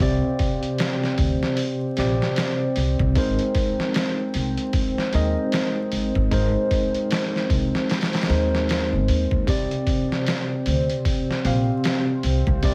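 A smoky, brooding trip hop excerpt in C minor at 76 BPM with a 16th-note swing opens on a clean tine electric piano with harmonic tremolo and tape echo, woody pizzicato upright bass on gut strings, and a muffled, pitched-down sampler-style drum kit with a thumpy kick and medium-tuned snare up front, joined at 0.3 seconds by a dark, detuned analog pad with slow attack, chorus and phaser, under light reverb and vinyl crackle as the harmony moves from Csus2 to Abadd9 at 3.2 seconds and back to Csus2.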